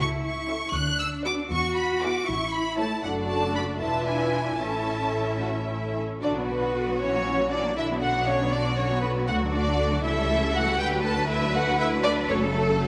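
Graceful and spirited, this quick classical-period movement for string orchestra moves in a rubato 6/8 at 79 BPM, opening in A major and turning to B minor at 6.2 s in this short cut from a longer piece. A close violin section carries the melody with vibrato and expressive portamento, while a second violin line sits up front with a smooth, even tone and a distant, soft-attacked viola section fills in the accompaniment from 0.5 s. Underneath, focused, lush cellos and a rich double bass section anchor the bass, all bathed in the generous reverb of a scoring stage.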